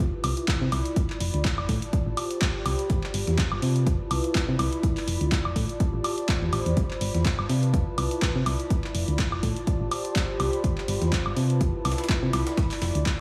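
Piano house with an uplifting, feel-good swing, cut from a longer piece, where a round, dark FM bass with tube saturation and sidechain pumping sits up front beside a punchy, layered electronic kick, while an analog drum machine adds handclaps, hi-hat and woodblock, a very quiet gritty breakbeat kit slips in hi-hat and a high-tuned snare from 0.2 seconds, and a warbling, nostalgic lo-fi pad with chorus and sidechain pumping drifts through a Cmaj9, F6, Am11 and G9 cycle, all inside a dreamy mix soaked in plate reverb.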